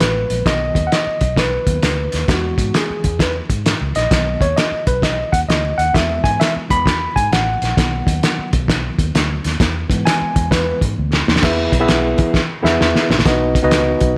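Uptempo 1960s-style soul at 131 BPM with a joyful swing, led by a clean tine electric piano soloing over B and E chords until 11.4 seconds, backed by a round, foam-muted vintage fingered electric bass and a gritty, cloth-damped, thuddy drum kit with a fat snare and dark cymbals that fills at 11.0 and 12.3 seconds, all set in light small-room reverb.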